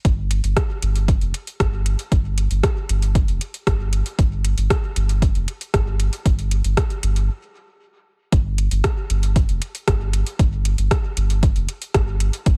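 A straight 4/4 pulse at 116 BPM drives this deep, meditative dub techno cut, taken from a longer piece and tuned to A4 = 441 Hz, with a brief stop from 7.3 to 8.3 seconds before the groove returns. An up-front, overdriven electronic kick sits beside a layered deep house kit of metallic hi-hats and rim clicks, both treated with studio reverb and overdrive, while the kit alone carries dub echo. A round, sine-like sub bass with fast attack and sustained notes holds between F1 and G1, pumping against the sidechain inside a digital, echo-heavy ambience.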